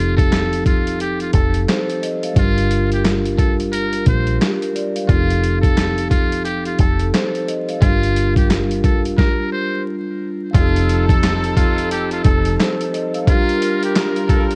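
A buzzy, breathy metal-muted trumpet carries a jazz-style solo melody with scooped notes and light vibrato over a reflective yet tough 88 BPM boom-bap groove swung on 16ths, backed by mellow soft-mallet vibraphone accompaniment over changes moving between F7 and Gm7, a round, dark fingered dub bass and a gritty, pitched-down sampler drum kit with thumpy kick, snare, hi-hat and handclaps, with a brief stop at 9.2 seconds before a clear, punchy pop-style horn section adds stabs from 10.5 seconds, the recording coated in worn cassette warble and vinyl crackle.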